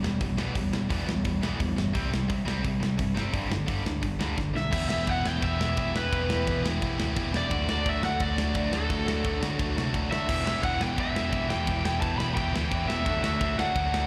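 Urgent and aggressive, this punk rock excerpt in E minor charges along at 173 BPM with a metal drum kit of bright cymbals and a medium-tuned snare, a growly, punchy overdriven bass, and two tight distorted guitars with slapback echo hammering out riffs, one up front and the other in the background dropping out after the opening before returning at 10.3 s, while a drum fill at 4.4 s ushers in a bright, crunchy overdriven lead melody and a double-tracked fuzz guitar riff, the sound captured like a live gig heard through the venue's PA with recital hall reverb.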